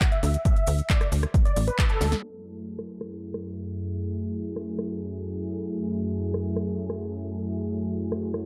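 Bright, detuned, sustained supersaw chords with sidechain pumping and delay open this driving, soaring uplifting trance excerpt over a punchy, tape-tinged electronic kick, a layered dance kit of crash, handclaps, rim click, low-passed metallic hats and punchy snare, grainy maracas in the background, and a tight, plucky sawtooth sequencer bass, before a band accent at 1.8 s and a drum fill lead into a thick, warbling, chorused unison pad with vintage 12-bit grit and a long filter sweep from 2.2 s, carried by the kit in a dark, lightly reverberant digital space.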